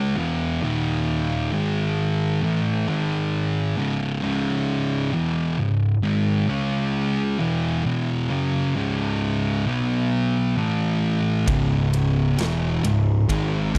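A heavy, sludgy stoner and doom metal fragment built on two dark, up-front fuzz guitars grinding out a distorted riff in a dry, close 1970s-style room, until at 11.5 seconds a growly, overdriven picked bass with tube saturation and a big acoustic drum kit with a punchy kick, medium-tuned snare and bright ride cymbal crash in together.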